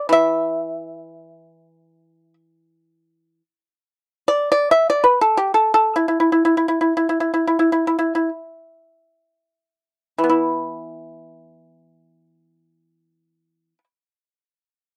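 A dry, close 1970s-style studio sound puts a solo pipa up front in this short passage of traditional Chinese plucked-string music, its percussive, fingerpicked tone conveying a longing, elegant mood in free time, gradually slowing through the opening 10.3 seconds before a new section begins and the pipa falls silent at 13.8 seconds, as the piece continues beyond this cut.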